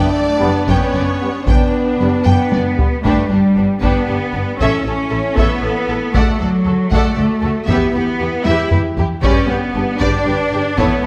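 Up front, a rich cello section carries the bass line with smooth, even vibrato, entering at 0.4 seconds alongside a distant double bass section. This epic, relentless cinematic score moves at 77 BPM in a straight 6/8, counted in dotted quarters, and it is cut from a longer piece. Dark violins carry the melody with soft-attacked, woody bowing, while a second violin line sits in the background and a lush viola section fills out the accompaniment. A roomy French horn section holds sustained chords throughout, joined briefly by background trombones that drop out at 2.9 seconds. Hard-stick taiko drums drive the pulse from 0.7 seconds, with fills that lead into the second section at 3.1 seconds and return near its close. A moderate scoring stage reverb surrounds the ensemble as the harmony moves from G over F# through G, A, D and E minor before settling back on G.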